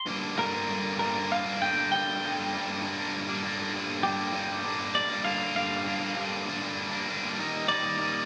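Rock in G minor at 99 BPM, this cinematic and melancholic passage moves in a straight 3/4 and is cut from a longer piece. A twangy, clean electric guitar carries the melody from 0.0 seconds, its compressed, picked tone sitting between G4 and G5. From 0.1 seconds a double-tracked electric guitar with overdrive plays the riff up front, its bright, picked sound spanning G2 to Eb4. The harmony holds on Gm7 before shifting to Ebmaj7 at 7.4 seconds. The pair sound like a band playing live together in a small room, with a moderate stone-room reverb giving the guitars a lingering, shadowy space.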